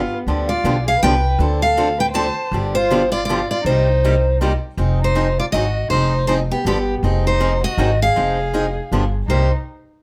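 Virtuosic and swinging, this snippet of acoustic string swing in a lilting three-time sets an up-front picked steel-string guitar melody, with audible finger squeak, over a dark bowed violin second line full of vibrato and portamento, a woody pizzicato upright bass, and a bright, boxy picked guitar accompaniment that enters at 0.3 s, all in light reverb as minor-key seventh chords turn toward a G7b9 and settle on Cm7 at 9.3 s.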